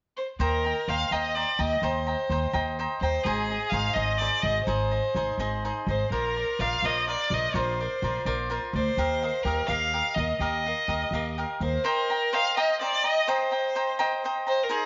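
A straight 6/8 lilt at 84 dotted-quarter beats per minute drives this festive, proud mariachi excerpt in E-flat major, cut from a longer piece, where a single bowed violin with a clear, focused, distant tone and vibrato carries the melody from 0.2 s. A bright, crisp picked cavaquinho and a woody pizzicato upright bass on steel strings support it through chords moving from Eb6 to Ab, Bbadd9 and Ebadd9, until the bass drops out at 11.8 s as the opening section returns. A wet echo-chamber reverb and small-room ambience surround the parts, and the top end sounds softly rounded.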